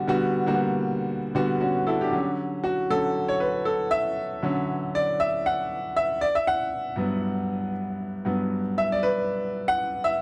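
Danceable and celebratory, this short disco passage at 117 BPM in D major features a lone grand piano, clear and boxy with short sustain, sitting up front across its range from G2 to F#5. The harmony moves from Gmaj7 to Dmaj7 at 2.1 seconds, where the piano's solo begins, then returns to Gmaj7 at 6.2 seconds. Light reverb touches the piano within a dry, close, 1970s-style studio sound, and the clip is cut from a longer piece.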